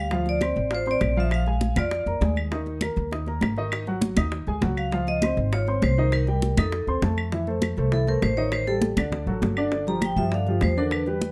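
Danceable and lively, this fast Afro-Cuban jazz excerpt at 200 BPM in 4/4 sets a ringing, metallic vibraphone melody (played with medium hard mallets, motor off) over a mellow, slightly detuned vintage upright piano and a thumpy pizzicato upright bass up front, with bright high-tuned congas, round low-tuned bongos and woody claves driving the groove, as the key moves from Bb major to F major at 7.3 seconds, where the vibraphone takes a solo through to the end.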